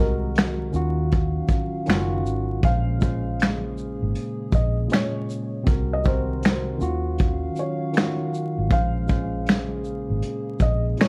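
A felt-muted upright piano carries a soft, intimate melody over a worn, slightly out-of-tune tine electric piano, a deep detuned analog pad with chorus and a round, foam-muted electric bass, before a muffled, gritty brush kit of kick, snare, hi-hat, shaker and finger snaps joins at 0.4 seconds in this melancholic, hazy lo-fi hip hop excerpt in Bb minor at 79 BPM with a 16th-note swing, cycling through Ab7/C, Ebm9 and Bbm9 under light reverb and vinyl crackle.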